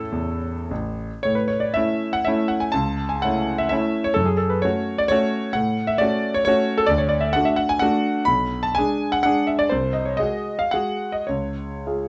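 Classical romantic piano in a triple-time dance, its dotted rhythms pulled and stretched by a free rubato that gives it a capricious yet nostalgic air. A solo concert grand, clear and natural with a deep bass and an up-front presence, carries the whole fragment from its brief opening into a longer passage that drifts through darkening minor and diminished colours before arriving on a C-sharp chord at 11.3 seconds. Light reverb lends a touch of space to this short cut from a longer piece.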